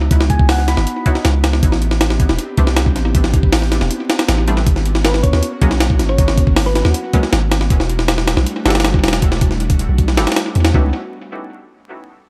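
Gritty, pitched-up breakbeat drums with a thumpy kick and high-tuned snare sit up front in this dark, raw drum and bass excerpt at 158 BPM, their sampled hits touched with analog delay over a deep, sine-toned 808-style bass. Muted, filtered dub chord stabs enter at 1.1 seconds with dub echo, and an airy, breathy pad with 12-bit sampler grit holds chords in the background through a C#m11, Am11, G#m11 and Em11 progression. A round, tine-like thumb-piano synth pluck offers brief melodic figures around 0.3 and 5.0 seconds, all within a dry, echo-heavy mix dusted with vinyl crackle.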